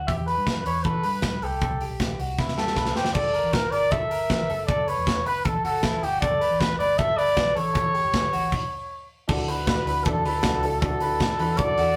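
A slightly broken-up, lo-fi electric guitar picks compressed arpeggios over a dark, round, foam-muted bass in this bright, nostalgic stretch of jangly indie pop in D major, cut from a longer piece and moving at 156 BPM in a straight 4/4. The trumpet carries the melody up front, a solo pop voice with light vibrato and scooped notes that still sounds distant and roomy. An acoustic drum kit recorded in a small room sits forward in the mix, with a tight kick, a medium-tuned snare, hi-hat and crash cymbal, and a drum fill arrives at 2.4 seconds. The harmony moves through Em, Gmadd9 and A7 before the band stops at 8.5 seconds. At 9.3 seconds an intimate, woody upright piano enters with slightly detuned accompaniment, its action noise audible, over a Dadd9 chord. Wet studio reverb and a rough rehearsal-room sound give the whole clip a loose, homespun feel.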